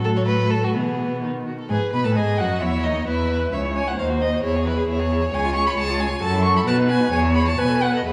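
A wet scoring-stage reverb with a 2.1 s decay surrounds this recording, layered with vinyl crackle and small room ambience. It is a lively, cheerful classical-period movement for string quartet in E major at 132 BPM in 2/4, cut from a longer piece: a rich, smooth first violin with vibrato sings the melody from a distance, a focused second violin carries a supporting line, and an expressive viola with portamento fills in the accompaniment. Up front, a warm cello holds the bass with vibrato and portamento, as the harmony moves from F#m/A through C#m and F#m7 before arriving on E at 7.1 s.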